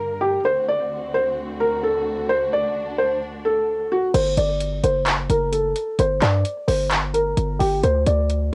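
Trap-style hip hop at 130 BPM in a half-time feel and G harmonic minor, this eerie, brooding fragment opens with a soft, mellow felt-muted upright piano melody, its action noise audible up close, over dark, lush bowed strings with vibrato and a cassette-tape tint, until at 4.1 s the strings stop and a punchy, heavy 808 bass and a gritty, 12-bit-sampled trap kit of crash, handclaps and metallic hi-hats join the piano, the whole set in light reverb with a homemade cassette character.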